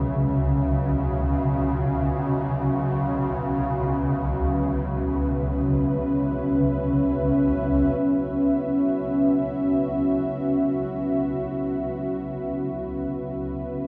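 Floating in free time and anchored in C# minor, this desolate, dark ambient fragment is cut from a longer piece and opens on a C#m chord, with a swarming, nasal drone holding the low register throughout its 13.9 seconds, its granular texture carrying a built-in reverb. Above it, a deep, full-bodied analog pad sustains moody chords with a chorus effect, both parts sitting up front in an echo-heavy mix bathed in a spring reverb. A very quiet bronze singing bowl adds metallic, ringing arpeggios with slow beating until 3.5 seconds.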